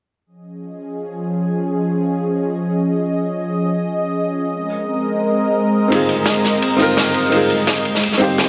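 Liquid drum and bass at 170 BPM with a lush, uplifting mood, this excerpt opens on a thick, warbling, detuned sawtooth pad with chorus sustaining Eb9sus4 and then Bb9sus4 chords from 0.3 seconds, joined at 5.9 seconds by a soft, felt-muted upright piano with digital delay and a crunchy, gritty, saturated breakbeat kit with dark cymbals and a rolled-off top, all set in a moderate plate reverb.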